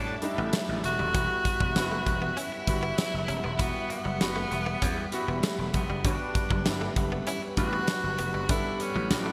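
A straight 4/4 groove at 98 BPM comes from a huge arena drum kit, which enters at 0.2 s with a fat snare and punchy kick up front, alongside a gritty, growly overdriven slap bass in this romantic, glossy 1980s-style pop fragment. A bright, forceful tenor saxophone carries the melody with vibrato and a digital delay, sounding distant and roomy, over clear, polished concert grand piano accompaniment, a very quiet twangy clean electric guitar riff and faint shimmering string-machine violins with a vintage sawtooth ensemble chorus. The chords move from A7sus4 to Emadd9 and then Gmaj7 at 6.0 s, all set in a lush hall reverb with bright 1980s-style digital production.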